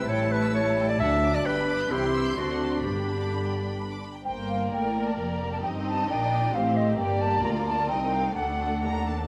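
Lively and cheerful, this quick classical-period movement for symphony orchestra moves at 131 BPM in 3/4 with a rubato feel, opening in G major before turning to G minor at 4.3 s. Violin sections carry the melody and a second line over a rich viola accompaniment and a lush cello and double bass foundation, while a bright, up-front clarinet adds its own second line and dark, distant French horns hold sustained chords, both until 4.0 s. The clarinet gives way to an airy concert flute from 4.2 s, all set in a wet recital hall reverb.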